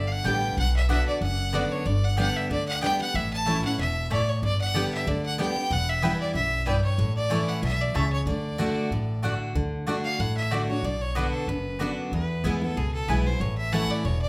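Bluegrass at a lively, rustic 187 BPM in D major with a swung 4/4 feel, where an intense, clear bowed fiddle with light vibrato carries the melody up front and takes a solo from 9.6 s, over a bright, full-bodied picked dreadnought guitar, a thumpy, dark pizzicato upright bass and softer double-string mandolin stabs with a woody tone, all captured as a band playing live in one room with moderate large-studio reverb, cut from a longer piece.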